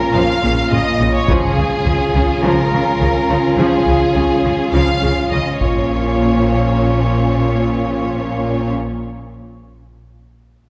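Relentless and epic, this cinematic orchestral film score moves at 104 BPM in a straight 4/4, rooted in Bb minor and cut from a longer piece. A rich, focused violin section carries the melody with vibrato, while a second violin section, soft of attack and lush, sits in the background beneath it alongside smooth, even violas. Mellow French horns hold sustained chords from a roomy distance, and the cello and double bass sections enter at 0.1 seconds to anchor the bass with a bowed, lush depth. Taiko drums struck with hard sticks join at 1.3 seconds from the background and fall away at 6.7 seconds. The harmony moves from Bbm to Db and returns to Bbm, with a shift into a new section at 5.9 seconds. A wet concert hall reverb places the ensemble further back in the room.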